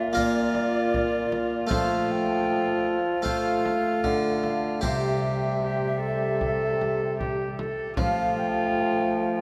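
Bathed in a long, wet cathedral reverb, this stately, festive Renaissance-style consort dance in a straight four sets an airy, woody baroque flute on the melody from the background, while an up-front, gut-string viola with light vibrato sings the second line; a bright, plucked harpsichord and a mellow, vintage-toned trombone fill in the accompaniment, a soft-attack bassoon anchors the bass, and a deep, close and dry frame drum sounds from 0.2 s to 8.3 s in this fragment cut from a longer piece.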